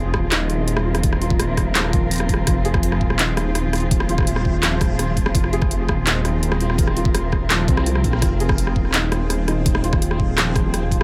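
A dry, echo-heavy mix gives this short piece of half-time drum and bass a close, dark and tense atmosphere. A deep, rumbling detuned saw bass sits up front with a beating, fast-attack tone, joined from 0.1 seconds by a knocking, overdriven electronic kick and a layered drum kit of bright hats, handclaps and rim clicks that sounds re-recorded in a small room. Beneath them, a distant studio cello section holds sustained, bowed chords with vibrato and a soft attack, its level pumping under sidechain compression. A felt-muted upright piano plays mellow, intimate arpeggios trailed by dub echo. At 3.5 seconds a reversed, granular texture enters in the background, dreamy and detuned with a long release and its own reverb, adding a bright shimmer above the gloom.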